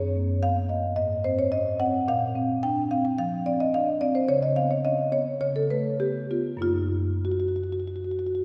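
Rubato in 4/4, hovering between 94 and 112 BPM, this flowing, playful contemporary classical fragment in F# major is taken from a longer work and lasts 8.4 seconds. A solo marimba with soft mallets ranges from F#2 to G5, its rosewood bars giving a woody, mellow, round tone that sits up front as the harmony moves from F# through A#add9 and C#aug7 to a closing F#6. A wet concert-hall reverb with a 2.0-second decay places the listener further back in the room.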